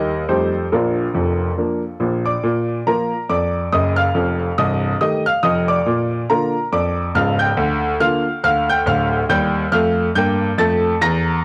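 Stride piano jazz with an exuberant, playful spirit bounces along in this brief excerpt cut from a longer piece, swinging its eighth notes in a steady four. A solo grand piano carries everything, sounding clear yet worn, with a short sustain and a place up front in the mix, coloured by the grain of cassette tape. Its range stretches from deep bass notes down at C1 up to bright figures at Bb6, filling the keyboard from top to bottom. The harmony moves through F9 and Bb early on, later touching Bb/D before landing on Eb at 9.3 seconds. A snug, wet booth ambience with a short decay and the homespun character of a cassette recording give the performance an intimate, close-up feel.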